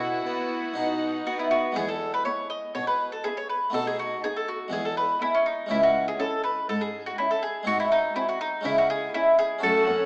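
A straight 4/4 pulse drives this lively, festive passage, cut from a longer baroque-style concerto movement with solo episodes. A mellow, round mandolin carries the lead up front, its picked double strings standing clearly above the ensemble. Behind it, one violin section adds a melody line high in the background with a smooth, vibrato-rich tone, while a second violin section plays a focused inner line beneath. A close, dry harpsichord with a bright, full French-style voice supplies the accompaniment alongside a viola section, and a distant, even cello section holds the bass. The harmony moves from a suspended opening into a sunny major progression before turning toward a minor chord at 5.7 seconds, all set in a recital hall reverb heard through a small-speaker sound.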